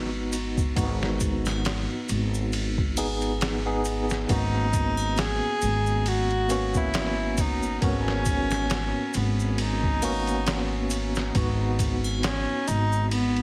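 A slow 68 BPM trip hop groove in 4/4 with a lightly swung sixteenth feel sets a melancholic, brooding tone in G# minor, carried by a pitched-down, gritty sampler-style drum kit with a thumpy kick, hi-hat, ride and snare, and a woody pizzicato upright bass sitting up front on G#1, while a tube shaker and triangle stay faint in the background. A bright, clean tine electric piano supplies chords with tremolo and tape echo, moving from B/G# to G#m11 at 4.3 seconds and back at 11.3 seconds. At 4.3 seconds a single close, bowed cello enters with a nasal, reedy gut-string melody roughened by 12-bit sampler grit and dub echo, all set in a small room and squeezed into a heavily compressed, radio-like sound in this fragment of a longer piece.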